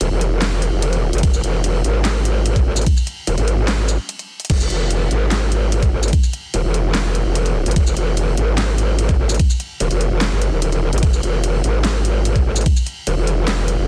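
A growling, wobbling bass sits up front, saturated and compressed with a formant-filtered edge, holding low between Eb1 and Ab1 through this menacing, chaotic slice of heavy wobble dubstep in F minor at 147 BPM, felt in half-time. A layered kit with a huge snare, handclaps, hi-hat, shaker, ride and crash plays from the start, and a knocking, overdriven electronic kick joins it at 1.2 seconds, with a brief break at 4.1 seconds. The dense, heavily limited mix carries little reverb, and the fragment is cut from a longer piece.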